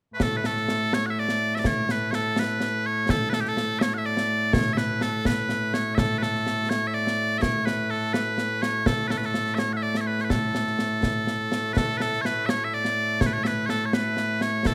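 Scottish traditional pipe music in a straight 6/8, this short cut from a longer piece feels stirring and proud. Loud bagpipes carry the melody from 0.1 seconds, bright and piercing, sounding as one continuous, up-front solo voice that ranges from a low A up to a high F#. Just behind them, from 0.2 seconds, concert snare drum and concert bass drum keep the beat, with a close, dry acoustic sound and dark cymbal colour. The tune runs through its opening strain and then begins it again at 11.8 seconds, holding together until the cut at 14.7 seconds. A moderate recital hall reverb gives the pipes a sense of space, while the drums stay tight and near.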